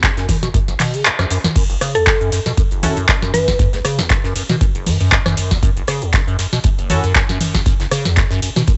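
A raw, trippy acid house groove in 4/4 rides a 16th-note swing, built on a deep, up-front electronic kick and a booming analog drum machine with a crisp snare, metallic hats, handclaps, shaker, rim click, toms, ride and crash, the snare, clap and hats wrapped in a short room. Buried far beneath them, a damped 70s drum kit adds a dry, fat snare and hi-hat with a rolled-off top. A squelchy, resonant square-wave acid bass riff runs throughout, its filter sweeping under a phaser and tube saturation. The kick drops out from 1.1 to 1.6 seconds around a band accent, and at 1.6 seconds the drop lands on an F#7(no3) chord and holds to the end. A woody, round FM mallet pluck carries a brief melody from 2.0 to 3.8 seconds, while a nasal, band-passed sawtooth chord stab punctuates at 2.8 and 6.9 seconds, both colored with chorus and analog delay. Light reverb and the lo-fi cassette sound of a home recording, with its top end shaved off, give this cut from a longer piece a hazy, tape-saturated grit.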